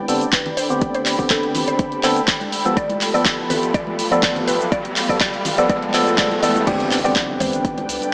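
A hall-washed, small-speaker-sounding deep house excerpt with a deep mood, where a gritty, chorused organ stab with tape echo punctuates hollow and ethereal pads, a woody mallet-like pluck melody, layered kick, dark-hatted kit with handclaps, cabasa and crash, and bright congas in the background, building under a filter sweep and riser until an impact and a round analog bass arrive at the drop at 6.7 seconds.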